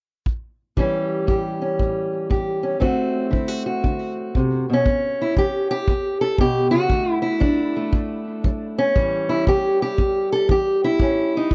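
A dry, close recording with a 1970s studio feel frames this gritty, soulful cut of acoustic country blues in A mixolydian, moving at 117 BPM with a swung 4/4 lilt. A tight, natural kick drum played with brushes sits up front from 0.3 seconds. At 0.8 seconds a dark, boxy parlour steel-string guitar joins, fingerpicking the melody with a touch of tape echo over A7 and D7 changes.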